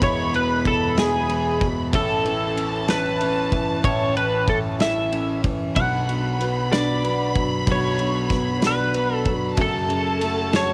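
A twangy twelve-string electric guitar carries the melody up front, its clean, compressed tone colored by analog chorus and the soft haze of cassette tape. This is an aching, melancholic pop ballad in a slow 6/8 at 63 BPM, tuned slightly sharp of standard, and the brief fragment lasts 10.7 seconds, cut from a longer piece. Beneath it, a clear concert grand piano plays accompaniment with deep bass, long sustain and audible action noise that makes it feel intimate and close. A lush bowed violin section holds a high second line with warm vibrato, while a very quiet picked dreadnought acoustic guitar adds arpeggios with faint finger squeak. A loose indie drum kit of kick, snare and ride breathes in a pumping small room, and the harmony moves from E to A at 1.9 seconds, then to B minor and F-sharp minor, all wrapped in light reverb and homespun tape character.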